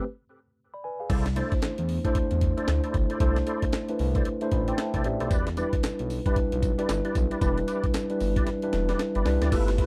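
A mellow tine electric piano sits up front in this slick, punchy new jack swing piece at 114 BPM, joined from the start by tonewheel organ stabs with light overdrive, chorus vibrato, key click and a slow rotary speaker. At 1.1 s a compressed, pitched-up, gritty breakbeat kit, with a thumpy kick, high-tuned snare, handclaps, hi-hat, tambourine and crash, enters alongside a smooth sawtooth synth bass, the groove swinging on the 16ths over C69 and then Em7. The piano takes a fill at 4.3 s and the drums add one at 8.5 s, all captured in a dry, close 1970s-style studio sound.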